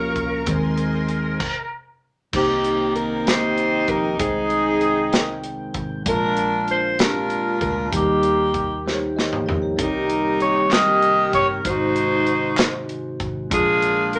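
A warm, smooth-topped saxophone section carries the melody from 2.4 s in this jubilant, hopeful slow gospel excerpt in Ab major, moving at 64 BPM in a straight 6/8 over chords like Cm7, Abmaj7/C, Bb7 and Ab7. It opens with a bright, overdriven slide guitar note and a brief, focused string chord, then a stop, while the bell-like tine electric piano with phaser, a mellow, flute-like tonewheel organ on slow rotary speaker, and a round, dark hollow-body bass play beneath from the very start. An up-front acoustic drum kit with a punchy kick plays a fill at 8.9 s, crisp handclaps join at 10.7 s, and a wet studio reverb surrounds the parts.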